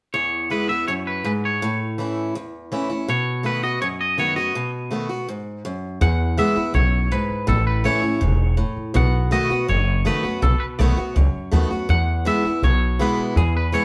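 Recorded live in a stone room with moderate reverb, this retro, rowdy rockabilly piece in E major runs at a straight 164 BPM in 4/4, with a twangy, clean electric guitar carrying the melody through spring reverb over a bright, picked steel-string acoustic guitar cycling through E, A and B7, until a woody, thumpy pizzicato upright bass joins up front at 6.0 seconds.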